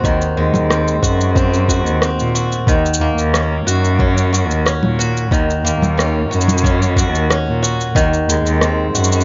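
Folktronica with a delicate, intimate mood, this short excerpt is cut from a longer piece and moves at an unhurried, straight pulse in four. A boxy, picked acoustic guitar with a swing-style touch sits up front, playing arpeggios through a digital delay. Beneath it, a clear, focused cello played by one bowed player carries the bass line with vibrato, also placed close to the listener. A soft electronic kick and a produced kit of shaker, congas and rim click provide the beat, both re-recorded in a small room, and the kick drops out at 8.1 seconds. The harmony settles on Ab7/Eb, shifts to Ebm7 at 2.7 seconds and returns to Ab7/Eb, all framed by light reverb and a softened top end.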